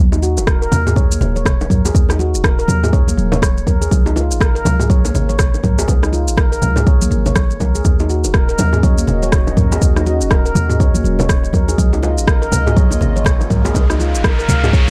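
Warm and earthy, this afro house cut in Eb minor moves at 122 BPM in 4/4 with a 16th-note swing. A boomy sine-based 808-style bass with tube saturation and sidechain pumping anchors the low end, and a ringing nitrided-steel handpan plays bright arpeggios with sharp finger strokes, shaped by a low-pass filter, digital delay and the same pumping. An up-front, layered electronic kick arrives at 0.5 seconds over an afro-pop kit of rim click, shaker and toms that is already playing, while thin-skinned congas played with hard hands and round, low-tuned bongos sit in the background. At 8.6 seconds a moody, detuned analog pad with a slow attack and sub octave slips in, treated with chorus, phaser and pumping. An electronic riser builds from 13.1 seconds to the close of this dark, dry-sounding excerpt taken from a longer piece.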